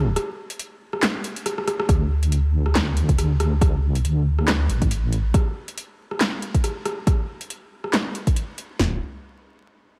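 Deep dubstep at 139 BPM in 4/4 with a half-time, lightly swung feel, brooding and heavy, cut from a longer piece. A deep, soft wobble bass opens at once, dark and sawtooth-edged with detuned sine weight, compressed and sustained, thickened by chorus and sitting up front in the low register from D1 to D2. It holds until 5.3 seconds and returns briefly near the end. An overdriven electronic drum kit of handclaps, metallic hi-hats, rim click and punchy snare comes in at 0.2 seconds, and after a short drum fill a second overdriven kit adds a deep kick, another snare and toms from 1.9 seconds. Both kits are layered and re-recorded in a large room yet placed up front, while the overall sound stays dry and carries vinyl crackle.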